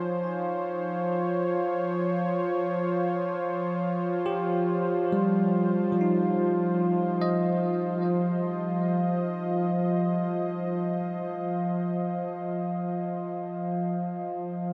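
Ambient and peaceful, this 14.7-second excerpt from a longer piece rests on an Fm9 chord, with an up-front analog pad of smooth, detuned sawtooth tones, softened by chorus and a slow attack, sustaining chords beneath clean, bell-like tine electric piano arpeggios trailed by diffuse ambient delay, while a quieter glass harmonica adds a pure, ethereal, beating high texture, all set in a vast, echoing space with a long reverb tail.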